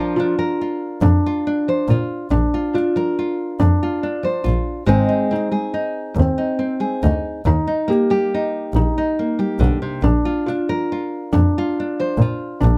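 Peaceful and nostalgic, this short acoustic folk excerpt in a straight 6/8 pairs an up-front, fingerpicked nylon-string guitar with audible finger squeak and intimate arpeggios from a thick-felted, vintage-sounding upright piano, while a veiled, bowed double bass played con sordino with vibrato joins at 1.0 seconds beneath chords moving from Bbadd9 through Ab and Eb back home, all captured close and dry.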